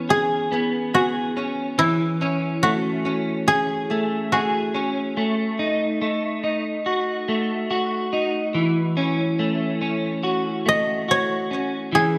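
A koto melody and an electric guitar playing arpeggios begin together, opening a blissful, ethereal slice of dream pop cut from a longer piece. The koto, plucked with fingerpicks, sounds mellow and woody, sitting up front with a dry tone that a digital delay trails behind. The guitar, pushed just to the edge of break-up, has a warm, slightly gritty character, its picked arpeggios shimmering through ensemble chorus and its own digital delay. Both parts sit close to the listener inside a lush scoring-stage reverb that lends the whole a soft, floating haze. The harmony drifts from E6 through Amaj7 and a diminished chord before settling on F#m7, and both instruments carry on together until the clip ends at 12.2 seconds.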